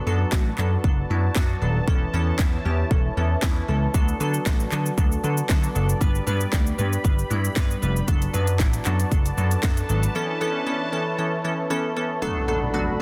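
A glassy wavetable pluck and a resonant, bright sawtooth pad open this summery, carefree dance-pop excerpt in D major at 116 BPM. Both are chorused and pumping against the sidechain: the pluck crystalline and detuned with a filter sweep, the pad evolving and warbling over a slow attack. An amped vintage slap bass, also sidechained, and a punchy, up-front house drum kit with cracking snare, handclaps, shaker, hi-hat and kick enter almost at once, driving through D6, Aadd9/E and G until 10.1 s, when a swell and impact arrive in the background while the pluck and pad continue to 13.0 s in a dense, heavily limited mix with little reverb.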